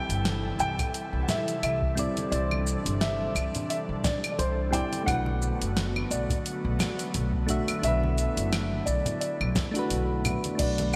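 A swung 87 BPM groove in 4/4 sets a wistful, relaxed sunset chillout mood, driven by a deep house drum kit with a fat, tape-warm snare, claves, hi-hat, shaker and crash under gated reverb, an overdriven electronic kick entering at 0.8 seconds, soft-handed congas in the background, and a woody, thumpy pizzicato upright bass up front. Over a Cmaj7 to Bm7 change, a dark, boxy baby grand piano carries the melody with delay, while round electric-piano-like synth keys with chorus and delay provide accompaniment and an airy, breathy, detuned pad holds sustained chords. The bright 1980s-style digital production sits in a lush hall reverb, and the clip is cut from a longer piece.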